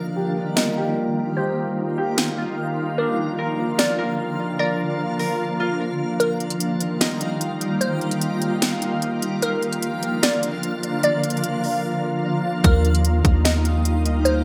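A half-time trap beat at 149 BPM in 4/4 sets a blissful, floating mood in this atmospheric cloud-rap excerpt in Eb major, with the electronic drum kit entering at 0.6 seconds: a hard-clipped kick, sharp snare and crisp hats sit up front, dressed in gated reverb. Alongside it, a shimmering ambient pad holds sustained chords up front, its detuned, octave-up shimmer, granular grain and slow attack softened by chorus, built-in reverb, a low-pass filter and sidechain pumping. A glassy, crystalline wavetable pluck carries the melody with a slightly nasal, bright digital edge, treated with chorus, delay, a low-pass filter and a filter sweep in the opening section. A mellow, ringing acoustic Celtic harp adds fingerpicked arpeggios through delay and a low-pass filter until 8.1 seconds, while a reversed, dreamy backwards texture swells quietly beneath, its triangle tone bright and reverberant. The chords move between Ebadd9 and Bb, the kick drops out from 6.2 to 12.6 seconds and the drums briefly fall away, and at 12.6 seconds a deep, boomy 808-style bass arrives up front with a fast attack and a decaying sine body, all set in a bright 1980s-style digital production with a moderate plate reverb.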